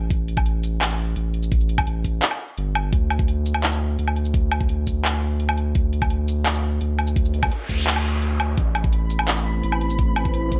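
A dry, close-sounding mix opens this cinematic, heavy half-time drum and bass excerpt at 170 BPM in A minor, with a thick, saturated sine sub bass sitting up front from the start. An electronic drum kit layered with metallic hi-hats, handclaps, shaker and woodblock carries a tape-warm, small-room character, while a knocking electronic kick drives the half-time feel. At 7.3 seconds a noise sweep enters the mix, and the kick drops out briefly before the music lands on A minor at 8.6 seconds. From there a deep, moody ambient pad of detuned sawtooth unison with a sub octave fades in slowly, its chorus, reverb and sidechain pumping giving it a dark, breathing quality. A flickering, granular texture high above adds a faint shimmer of grain to the closing seconds.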